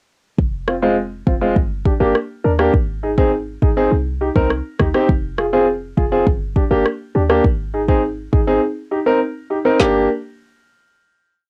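A short 808-style bass and an afro-pop drum kit open the piece at 0.4 seconds, with a clear concert grand piano joining at 0.7 seconds on a tough, sultry dancehall groove at 102 BPM in G phrygian. The drums are electronic and produced, placing a deep kick, a woody snare and rim clicks up front in a sparse dancehall beat, colored by a cassette tape effect. The bass is punchy and tight, a sine tone with a noise layer, fast attack and decaying notes playing syncopated low lines. The piano sits up front with natural, long-sustaining off-beat chords in close voicing, also through cassette tape, cycling through Fm, Gm, Ab and Cm twice. After a silent gap from 8.6 to 9.8 seconds, the piece closes on a final Gm chord in a dry, homemade cassette sound.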